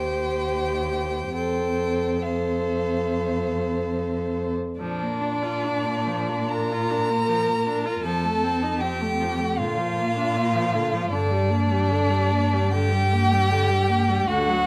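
Solemn and melancholic, this slow romantic string quartet movement in Bb major drifts with rubato at 67-79 BPM, its rich, focused first violin singing the melody over a smooth second violin line, a clear viola accompaniment and an expressive cello bass bowed with vibrato and portamento, all set in a moderate scoring stage reverb captured by close, detailed microphones, with a new section arriving at 4.8 seconds.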